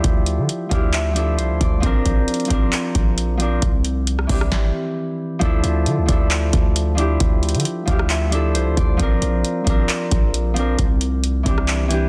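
The mix is dense and heavily limited, with little reverb, giving this dark, eerie trap clip, cut from a longer piece, a close and modern sound. At 134 BPM in a half-time feel and D minor, a bright, ringing Celtic harp plays fingerpicked accompaniment up front, softened by a low-pass filter as it moves through Dmadd9, Bbadd9 and Cadd9. Underneath, a hard-hitting 808-style bass brings a punchy, heavy sine tone with a noise layer, a fast attack and a decaying tail. A booming analog drum machine sits forward in the mix, tape-warm, with a deep kick, a crisp snare, metallic hi-hats, handclaps and rim clicks; the snare, clap and hats carry a short room. A stop from 4.5 to 5.4 seconds breaks the groove before the second section opens at 5.4 seconds and cycles through the same three chords again.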